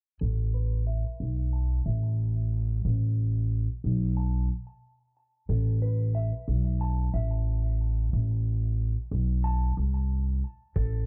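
A dark, dry production with a low-pass filter gives this trip hop excerpt a hypnotic, smoky air at 91 BPM in 4/4, with a light swing on the sixteenths in A minor. A semi-hollow electric guitar plays clean, picked arpeggios between A4 and A5, sitting low in the mix and coloured by vintage 12-bit sampler grit, a low-pass filter, delay and a filter sweep across its full span from 0.2 to 11.1 seconds. Underneath, an upright bass plucked pizzicato carries the low end from A1 to C2, woody and up front with steel strings. The harmony moves from Asus2 to a rootless Cmaj7 over A at 5.5 seconds. A dusty soul sampler-style drum kit appears only briefly at 10.8 seconds, a compressed, tape-toned hi-hat and thumpy kick with gritty 12-bit character, just before the passage cuts off at 11.1 seconds.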